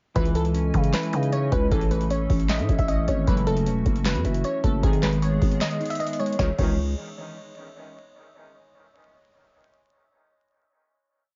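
A booming, overdriven analog drum machine drives this brooding, melancholic trap piece at 154 BPM in a half-time feel, with a deep kick, crisp snare layered with clap, and metallic sixteenth-note hats with fast rolls, alongside a growling 808-style bass whose long sub-bass notes follow the kick with pitch slides. Over a C# minor progression, a glassy wavetable pluck loops a crystalline, warbling melody with chorus and dub echo, while a dark, clean electric guitar repeats a rising and falling eighth-note arpeggio. A hollow, flute-like pad and very quiet brass stabs sit in the background of the dry, echo-heavy mix with vinyl crackle, and after a break at 5.6 seconds the piece settles on a final chord at 6.4 seconds.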